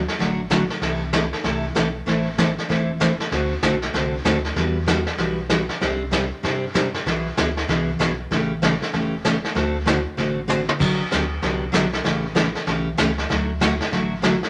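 Country western swing at 192 BPM with a 62% swing on the eighths, this cheerful, playful excerpt from a longer piece features a picked steel-string acoustic guitar, bright and full-bodied up front, moving through chords from D and C6 to Emadd9, E/B and Gmaj7 before settling on Dadd9. A vintage brush drum kit with a punchy kick and a rolled-off top keeps time on brushed snare, hi-hat, crash and toms, adding a fill at 10.5 seconds, while a round, mellow sub bass sits quietly beneath. A wet studio reverb with a short 0.7-second decay frames the small-room sound.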